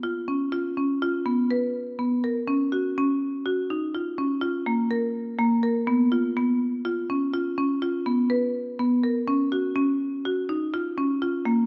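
A dark, warm production with light reverb frames a solo marimba played with hard mallets, its woody, percussive padauk bars sounding vintage and band-limited up front, as this hopeful, playful contemporary chamber excerpt moves at 123 BPM in an uneven 7/4 in F# major, ranging from A#3 to B4 over about 11.6 seconds.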